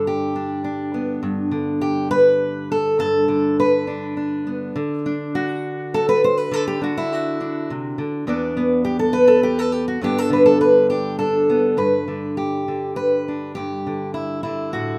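A lone fingerpicked steel-string acoustic guitar opens this short folk excerpt, its auditorium-bodied tone sitting up front in a light reverb. In an unhurried three-beat lilt, it moves through Gadd9, D and E5 chords before returning to Gadd9, then settles on G at 11.8 seconds as a brief new section begins. The mood is hopeful and peaceful, with the warm guitar spanning from low bass notes up into its upper register.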